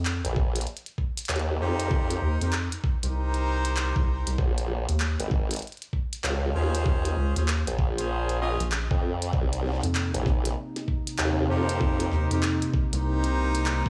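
Glitch hop at 97 BPM in C phrygian, funky and playful, with a swung 16th-note feel over a Cm7 to Bbm7 progression in this excerpt cut from a longer piece. A rubbery, hollow square bass and a saturated formant-sweep wobble bass with chorus and overdrive sit up front beside a gritty, thumpy, pitched-down kick, while a glitchy kit adds a tiny snare, clicky hats and handclaps with studio reverb. A tight, bright horn section enters with stabs at 1.6 seconds through sidechain pumping and digital delay, and a smooth, detuned analog pad with 12-bit sampler grit arrives at 9.3 seconds as the chords return to Cm7, all in a small, dry room.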